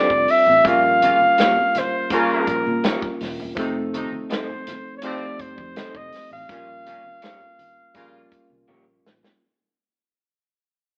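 This clip has the narrow, lo-fi character of AM radio, with a band playing live together in one stone room whose moderate reverb lends the whole a soft halo. It is lush 1970s-style soul in a straight 4/4 with a smooth, warm mood, cut from a longer piece and fading out across its full length. Up front, a flugelhorn carries the melody in a jazz style, scooping into its notes, while a distant horn section with light vibrato adds pop-style stabs. Beneath them, a worn, slightly out-of-tune tine electric piano supplies mellow accompaniment over the chords F69, Bbm6 and F7. An electric guitar through a small old amp plays a picked, slightly broken-up riff, and a dark, foam-muted fingered bass sits round and punchy in the background. A roomy, distant soul drum kit with a tight kick and a medium-tuned snare keeps time alongside low-tuned, thick-skinned congas, and the drums close with a fill from 8.7 s to 9.4 s.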